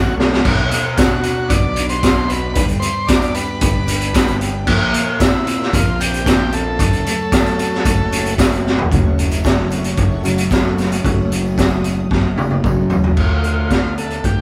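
A buzzy, overdriven combo organ with light vibrato carries the melody in this dark, mysterious psychedelic rock fragment, over a phaser-tinted, clean guitar riff, a growly fuzz bass and shimmering sawtooth string-machine violins held very quietly beneath, as a gritty garage drum kit crashes in with a fill. The up-front drums, with their punchy kick and high-tuned snare, are joined by a faint, jingly tambourine, and the band sounds like it's playing live together in one room with light reverb. The organ drops out at 8.3 seconds, then returns with only the bass and drums at 13.2 seconds as the strings and guitar fall away on a closing minor chord.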